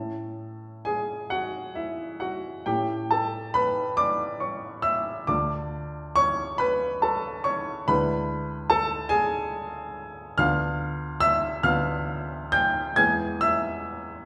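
The rhythm moves in a slow 6/8 at 47 beats per minute on the dotted quarter, with uneven beats and free rubato that let each bar breathe. This is a romantic classical nocturne in A major for solo upright piano, tuned to A4 = 443 Hz, and its mood is wistful and melancholic. The piano sits up front with a warm, woody tone and short sustain, ranging from D2 up to G#6. The harmony drifts from A through A7 to D minor, then darkens over E7/D and Bdim/D before settling on E at 13.0 seconds. A wet recital-hall reverb, as if heard in a church or concert hall, surrounds the piano in this 14.3-second fragment of a longer piece.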